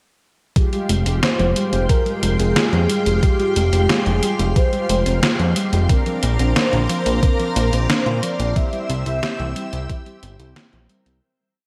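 A straight 4/4 pulse at 90 BPM drives this nocturnal, cinematic synthwave piece in F dorian, with an up-front, thumpy overdriven machine kick and a gated 80s drum machine backbeat of closed hats and gated-reverb snare, joined at 0.9 s by a fat, nasal analog bass in galloping sixteenth notes with tube saturation and sidechain pumping. Over Fmadd9, Bbadd9 and C chords, a lush vintage string machine holds pumping ensemble-chorus pads, a round, tine-like FM pluck runs an eight-step arpeggio under a filter sweep with tape and delay, and dark, brassy synth stabs pulse in close voicing in the background. A velvety synth lead with chorus, vibrato and delay carries a motif-based melody from 1.2 s, all set in a lush hall reverb with bright 1980s-style digital production before a fade-out begins at 7.7 s.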